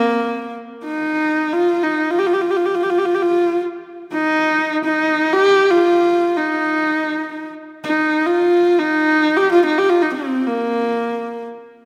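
Bathed in a wet concert-hall reverb with a 2.4-second tail, this short cut from a longer traditional Mongolian folk piece features a single clear, husky horsehead fiddle, bowed on horsehair strings and placed close and up front, playing solo in free time from 0.0 to 11.5 seconds between Bb3 and G4, its focused tone carried by vibrato and portamento in a galloping, proud mood.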